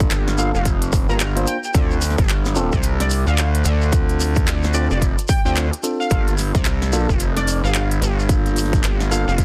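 Opening on a punchy, up-front electronic kick, a dubstep kit of handclaps, crisp hi-hats and a deep snare, a grainy, close shekere, a saturated, aggressive sawtooth synth bass and clean tine electric piano stabs pumping through tape echo, this playful, gritty glitch hop fragment with swung sixteenths and a dry, dense master brings in an edgy, tearing sync lead with subtle chorus at 0.4 seconds over chords that move from Gm7 to Dm7 and back.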